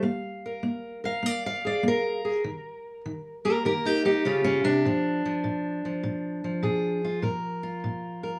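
A swung eighth-note feel at 100 BPM in 4/4 drives this short clip of acoustic country blues, cut from a longer piece and set in B-flat mixolydian. The mood is rollicking and swaggering. A fingerpicked steel-string acoustic guitar plays alone from start to finish, its sound up front and warm, with a concert-instrument fullness. It ranges from a low Bb2 up to F5, moving from Bb5 to Eb7 at 2.4 seconds and then to Bb7 at 4.8 seconds. A moderate studio reverb and the ambience of a small room give the guitar some air, and the whole passage lasts about 8.4 seconds.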